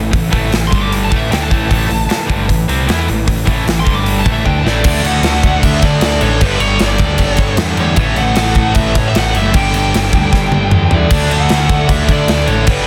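Hard rock with an anthemic, swaggering feel, this excerpt drives along at 153 BPM in a straight 4/4, cut from a longer piece. Two bright, picked electric guitars sit in the background playing the riff, one cranked with overdrive and the other heavy with high-gain distortion, over power chords moving between A5, G5 and D. A growling, overdriven picked bass anchors the low end, while a big acoustic drum kit sits up front with a punchy kick, medium-tuned snare, toms and bright cymbals, ringing in a big room and adding fills at 4.4 and 10.3 seconds. From 0.7 seconds a dark, smooth overdriven lead guitar soars high above, soloing through the opening section before carrying the melody, its tone bathed in plate reverb and tape echo. A very quiet, warm sawtooth analog pad with a soft attack and chorus holds sustained chords beneath it all, and the mix is dense and heavily limited with only light reverb overall.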